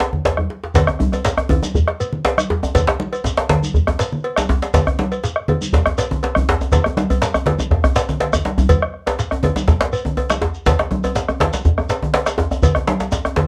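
A drum fill opens this festive, earthy West African drum ensemble excerpt at 121 BPM in a straight 4/4, while a woody, buzzing balafon is barely audible and gone by 0.5 seconds. A round bombo and a deep, rattling djembe sit up front, with a tight, cracking second djembe further back, bright thin-skinned congas, a metallic cowbell and a grainy shekere filling out the pulse, and another fill arrives at 8.2 seconds. The recording carries light reverb and the worn, warbly pitch drift of old cassette tape.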